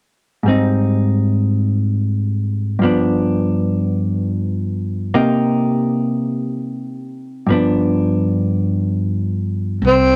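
Set in a small, moderately reverberant room, this smoky, melancholic jazz ballad at 51 BPM opens with a dark, clean hollow-body guitar playing fingered, compressed chords alone from 0.4 s, moving through Abmaj7, G7 and Cm7 with a lazy swing. Near 9.8 s a woody, thumpy pizzicato upright bass on gut strings and a very quiet brushed snare with a rolled-off top come in. At 9.9 s a growling tenor saxophone takes the lead, breathy and raspy with subtone, vibrato and scooped notes, before the cut ends.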